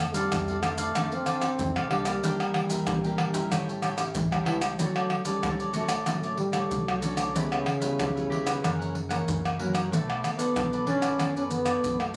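A breathy, whispered trombone sings a dark, intimate jazz-style solo with light vibrato and scooped notes over crisp picked cavaquinho, fingerpicked nylon-string guitar and a woody pizzicato upright bass in the background, while maracas, a deep surdo, pandeiro and tamborim enter up front at 0.1 s with hard, saturated hands. This sunny, lively samba-choro fragment moves at 94 BPM in a straight 4/4 and settles into D major at 4.8 s through chords such as Dmaj7, F#7 and Bm9. It was captured on a phone in a compressed studio room with moderate reverb.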